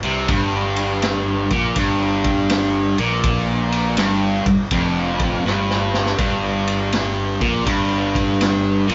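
Brooding and smoky, this short cut from a longer blues rock and southern rock power trio piece grinds along at 82 BPM with a swung 4/4 feel in G minor, as an up-front, double-tracked distorted electric guitar riff bites over a growly fuzz-laden fingered bass and a vintage kit with a punchy kick, dark ride cymbal and medium-tuned snare, which throws in a fill at 5.5 seconds, all played live in one room with moderate studio reverb and a rolled-off top.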